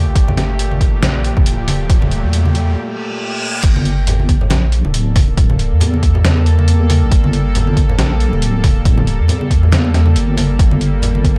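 Dark, dry production gives this short cut from a longer deep dubstep track a close, meditative yet cavernous feel, sitting at 138 BPM in a half-time swing and centred on a G minor add-nine chord in G dorian. A tense, string-like drone with a slow attack, vibrato and its own reverb holds sustained chords throughout, while a deep, detuned wobble bass with chorus sits up front beneath it. A background riser and reverse cymbal lead a build-up into a short break at 2.8 seconds, and the drop lands at 3.6 seconds. A punchy, layered electronic kick drives the groove, joined by a gritty, pitched-down sampler-style kit of snare, hi-hat and crash cymbal with a tape-like character. Bright, saturated congas and bongos played with hard hands add texture further back in the mix.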